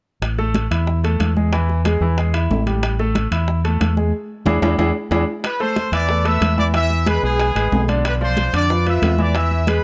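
Danceable and fiery, this salsa excerpt drives along at 184 BPM in a straight 4/4, settling into A harmonic minor from 5.4 seconds. A round, punchy fingered electric bass sits up front alongside a brilliant concert grand piano with deep bass and short sustain, which enters at 0.4 seconds to carry the accompaniment. Behind them, high-tuned congas struck with hard hands and tight bongos played with soft hands stay in the background, while metal-shelled timbales ring out in a live room. A drum fill and a band accent from 4.1 seconds lead into the second section at 5.4 seconds, where a tight trumpet section with light vibrato takes the melody up front, reaching as high as E6. The recording is close and detailed with little reverb, so the dark bass and polished piano sound immediate and present.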